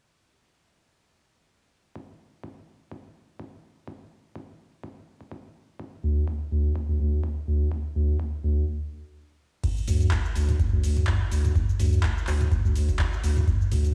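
A thick, saturated sine sub bass with a fast attack pumps up front from 6.0 s in this raw, trippy acid house cut at 125 BPM with 55% swing on the sixteenths and tuning at A4 = 445 Hz, riding a deep, high-pass-filtered analog kick that begins at 2.0 s, until a short break gives way at 9.6 s to a booming, tape-warm drum machine of metallic hi-hats, cabasa, handclaps, toms and crash cymbal, while a digital ambience evokes a big sound system in a bare stone room.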